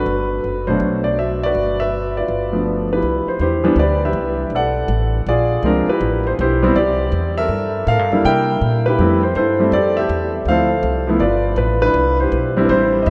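Relaxed and swinging, this short jazz excerpt moves at 162 BPM in 4/4 with a lilting swing on the eighth notes, starting in G major before settling into C major from 3.0 seconds. A concert grand piano carries the melody throughout, sounding natural and up front with a deep low end, ranging from B2 up to G5. Beneath it, a plucked upright bass with steel strings holds down the bass line, its tone woody and thumpy, sitting lower in the mix than the piano. The harmony moves through rich extended chords, opening on Gmaj7 and G9, then travelling through Cmaj7, Bb9, Gm9, Fmaj9 and Dm7 before landing on Cmaj9. Both instruments are bathed in a long cathedral reverb that places them in a vast, echoing space, with the top end rolled off above 10.8 kHz. The passage is cut from a longer piece, so it begins and ends mid-flow.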